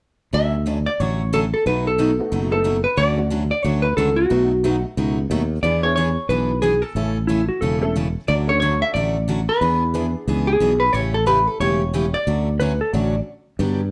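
A swung eighth-note feel at 181 BPM in 4/4 drives this down-home western swing cut in D major, taken from a longer piece and moving through chords such as Dmaj7, B7, E7 and A7. Up front, a vintage hollow-body jazz guitar carries the melody with a dark, clean, picked tone, while a growly, punchy fretless electric bass sits equally forward with a direct, amped sustain. A bright, full-bodied jumbo acoustic guitar with fresh strings picks out the accompaniment, its finger squeak audible, and from 2.2 seconds a detuned, jangly upright piano adds woody, short-sustained honky-tonk color in the background. A compressed lap steel slides in briefly for a second line around 7.3 seconds and again near the close, its fingered notes shaped by volume swells. Light reverb surrounds the swinging band before a stop at 13.3 seconds.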